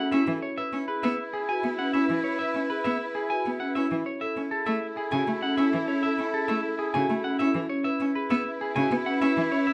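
Classical minimalist pattern music in 6/4 with a propulsive, bright mood, cut from a longer piece. A clean, scooped electric guitar carries the melody up front over woody marimba arpeggios and a focused, close cello accompaniment that enters at 0.1 s, while a solo oboe with light vibrato holds a second line on E4. A distant, lush violin section sustains chords behind them, set in a moderate large studio reverb with a dark production as the harmony moves between F#m7 and C#m7.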